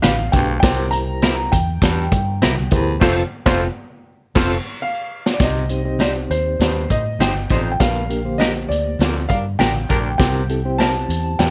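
A straight 4/4 groove at 100 BPM drives this joyful, uplifting fragment of uptempo 1960s-style soul, where an up-front vintage drum kit with a punchy kick, high-tuned snare and dark cymbals, a round, foam-muted electric bass and very quiet, bright congas carry a concert grand piano melody touched with tape echo and audible action noise, clean hollow-body guitar stabs, a reedy, slightly out-of-tune electric piano with fast tremolo from 0.3 s, a raspy, growling baritone saxophone riff, and a loose horn section with light vibrato arriving in the background at 3.0 s for a band accent and drum fill before the chords move from F to Cm at 5.4 s, all in a dark, dry production.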